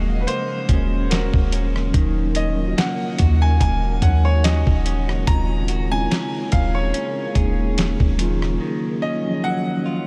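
A mellow tine electric piano, a direct-recorded clean electric guitar picking compressed, bright arpeggios with subtle chorus and analog delay, and a deep, boomy 808-style bass open this moody, sensual contemporary R&B passage at 72 BPM in 4/4, with a 16th-note swing. An ethereal pad of detuned sawtooth and triangle voices sits in the background with slow-attack sustained chords, ensemble chorus and its own reverb, while a brilliant concert grand piano carries the melody, touched by analog delay. A dusty soul sampler-style kit of hi-hat, kick, rim click and snare enters at 0.3 seconds, sounding gritty and overdriven, with a thumpy kick sitting up front beside the dark, sine-like bass. The harmony moves from Ab9sus4 over Eb to Bbm9 over Eb at 5.3 seconds, then settles on Ebm9. At 8.6 seconds the drums and bass drop out, leaving the keys, guitar and pad to ring on in light digital ambience until this cut from a longer piece ends.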